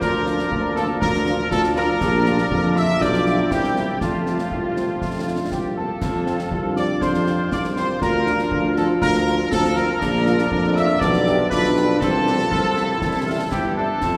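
A festive, spirited military-style march for wind band in F major at 120 BPM in 2/4, heard as a short cut from a longer piece, with a clear, roomy trumpet section carrying the melody up front while a soft-edged piccolo, a warm euphonium and a smooth-topped woodwind section weave second lines in the background. A bright, close-miked trombone section holds sustained chords until 13.7 s, a mellow, distant tuba anchors the bass, and a very quiet French horn section accompanies from 0.3 s, all over concert snare, bass drum and dark clash cymbals that sound close and dry. The whole band sits in a long, wet cathedral reverb of a church or concert hall, and the harmony moves from Bb/D through Bb, G7/B and C to F, then returns through the same chords and ends on F/C and C.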